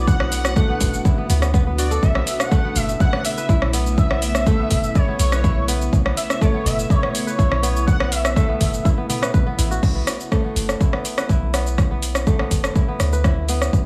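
An up-front, overdriven electronic kick drives this earthy, spiritual afro house excerpt at 123 BPM in B minor, joined by metallic-hatted afro-pop drums with cabasa, rim clicks and toms, a deep, boomy 808-style bass, ringing fingerpicked kora arpeggios with dub echo, an ethereal background pad over Bm7 and Aadd9 chords, and a smooth, nasal synth lead with vibrato that carries the melody until 8.8 seconds before the pad ends at 9.8 seconds.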